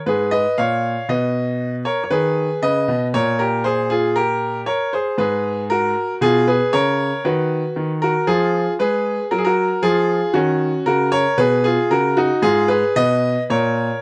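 Moving in a slow, rubato 3/4 at 58 BPM, this grave and solemn passage is a baroque-style suite movement for solo baby grand piano, cut from a longer piece. The piano plays alone for the full 14 seconds, ranging from G#2 up to E#5. Its tone is bright and brilliant, with an open character and long sustain that lets each chord ring. The harmony begins in G# minor and passes through a rich A#m13, B major, diminished colours and Gb, closing on a rootless Gb chord. Close, detailed microphones and a nearly dry room place the instrument up front, so the sound feels intimate and exposed.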